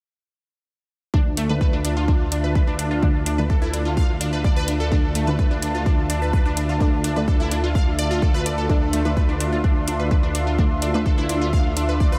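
Cinematic and driving, this melodic techno excerpt in D minor at 127 BPM rests on a Dmadd9 chord, with a punchy kick up front and metallic hi-hats, a rumbling detuned saw bass with tube saturation, bright phaser-and-tape-coloured pluck arpeggios with analog delay, a thick warbling pad of sustained chords, very quiet brassy synth stabs, and a moody ambient pad barely audible from 8.0 seconds, while the pad, pluck and bass pump with sidechain compression.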